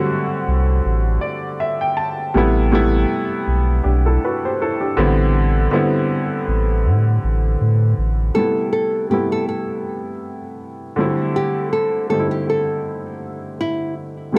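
Lo-fi hip hop at 80 BPM in A dorian with a light 16th-note swing, hazy and nostalgic in mood, this excerpt opens on a worn, woody upright piano that sounds slightly detuned and carries a cassette tape tint as it moves through D9sus4, Am9 and Am11 chords. A deep, full sub bass with an added octave joins at 0.5 s and holds until 8.3 s, when a small, fingerpicked nylon-string guitar takes up the melody through the end at 14.4 s. Moderate spring reverb and a small room ambience surround the up-front parts.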